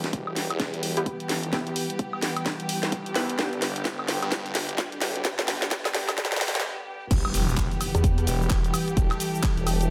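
A pulsing, heavy pluck wobble bass stands out at 7.9 seconds, up front and saturated with chorus, pumping briefly on E during the drop. This is a bouncy, swaggering bass house excerpt in E minor at 129 BPM, swung on the 16ths, and it moves from a build-up with a drum fill and short break into a drop at 7.1 seconds, where a very quiet electronic impact lands. Underneath, a swirling, thick, detuned saw bass with phaser and sidechain pumping sits beside a rich, smooth studio string section holding bowed chords with light vibrato. These chords move from Em to G and back to Em. From 1.0 seconds a bold, bright orchestra-hit-like synth stab punches in with ring modulation, a filter sweep and dub echo. A punchy electronic kick and an up-front house kit with a cracking snare, handclaps, hi-hat, cabasa, woodblock and crash drive the groove in a light reverb.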